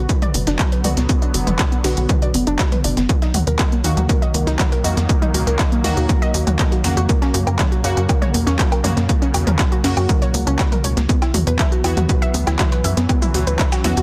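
From 0.1 seconds, a punchy, up-front electronic kick drives this cinematic, melancholic melodic techno excerpt at 120 BPM in straight 4/4, entering together with a layered techno kit of smooth hats, handclaps, toms and woodblock. Underneath, a tight, nasal sequencer bass built from sawtooth and square waves pumps with the sidechain, while a warbly, lo-fi pluck spins arpeggios through chorus and delay, its filter sweeping across the full 14 seconds. Further back, detuned synth brass stabs carry a brassy bite through phaser and delay, and an airy, evolving pad holds sustained chords with a slow attack and long release. A gritty, sampler-style soul kit of hi-hat, shaker and snare sits low in the mix, recorded in a large room and high-pass filtered. The chords move from Bm to D#m, F# and Esus2 under light digital ambience, in a dense, heavily limited master.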